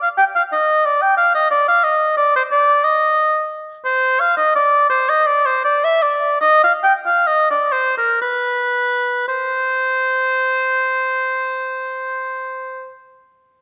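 A dark, warm production places a lone oboe up front in a moderate scoring-stage reverb that lingers for about 1.5 seconds. This is a classical, baroque-style fantasia for unaccompanied oboe in C minor, cut from a longer piece, with an introspective, grave mood. The music moves in 3/4 with a free, rubato feel, its tempo wandering between 55 and 92 BPM and slowing down from 3.2 to 9.3 seconds. The oboe sings in classical style within a compact range from Bb4 to G5, tuned slightly below modern pitch at A4 = 437 Hz. After the opening passage, a new section begins at 9.3 seconds, and the instrument sounds alone until it stops at 13.0 seconds.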